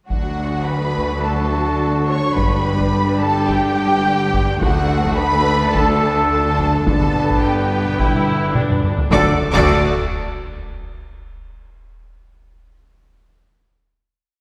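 Cinematic, epic orchestral film score with a triumphant, adventurous mood in a straight 4/4 pulse. A lush violin section carries the expressive, vibrato-rich melody, while a second violin line doubles the tune at the octave. Beneath them, rich violas hold tremolo chords in the background and answer at phrase ends, while cellos and double basses sustain a smooth, even bass. Mellow, close-miked French horns swell through slow sustained chords, and a more distant, roomy trumpet section adds tight stabs. A taiko ensemble drives the whole piece with a heavy-stick ostinato in a live room; from 6.9 seconds, dark cymbal swells, crashes, concert snare and bass drum strokes join, with a drum fill leading into a full-band accent and final chord at 9.1 seconds, all heard from further back in a reverberant scoring stage.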